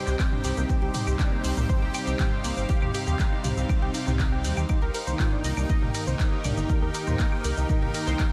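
Cinematic and dramatic, this melodic techno fragment drives on a punchy analog kick and a deep, rumbling detuned saw bass, both up front, while a tight sequenced synth runs mellow chorused arpeggios with tape echo, a brassy analog pad stabs in the background, an evolving wavetable pad morphs through phased sustained chords, a smooth bowed string section adds texture, and a layered techno kit of claves, handclaps, shaker, toms and hats sits over a very quiet dry acoustic kit of hi-hat, ride and high-tuned snare, with the pads, strings, synth and bass all pumping to the sidechain.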